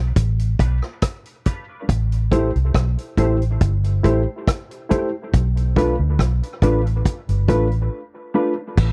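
A dry, close recording with little reverb and a 1970s studio character frames this short dub reggae excerpt, which moves at 70 BPM in a straight 4/4 with a spacious, meditative mood. A vintage muted fingered electric bass opens at 0.0 seconds, its tone dark, round and foam-muted, sitting up front between G1 and D2. The vintage drum kit follows at 0.2 seconds with a punchy kick, dark cymbals and a rolled-off top, using crash, hi-hat and rim click. At 0.6 seconds a mellow electric guitar and a reed electric piano join at lower levels, both high-passed and sent through dub echo. The guitar is clean and compressed with analog chorus, and the piano has a reedy, worn, slightly out-of-tune voice as it plays stabs. A filter sweep colours the opening, the chords move from Bm7b5 to Am7 and back, and a break arrives near the end.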